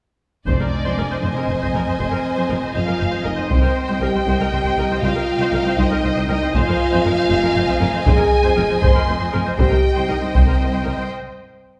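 This cinematic, epic orchestral film score excerpt moves in a rolling 6/8 with a relentless, heroic mood, its harmony swinging between Fm7 and Cm. A taiko ensemble struck with hard sticks drives the piece at the front of the mix, its sound compressed and saturated, while a timpani on F2 adds articulate hard-mallet strokes between 0.5 and 1.2 seconds. Dark, tight French horns hold sustained chords, and beneath them cello and double bass sections carry the bass, the cellos close and smooth, the basses even and sitting in the background. A rich violin section sings the melody from C5 to C6 with vibrato and expressive portamento, heard at a distance, as a lush second violin line and focused, clear violas fill in the middle. Bathed in the wet reverb of a recital hall, the strings and horns drop out around 11.1 seconds, leaving a brief break before the cut.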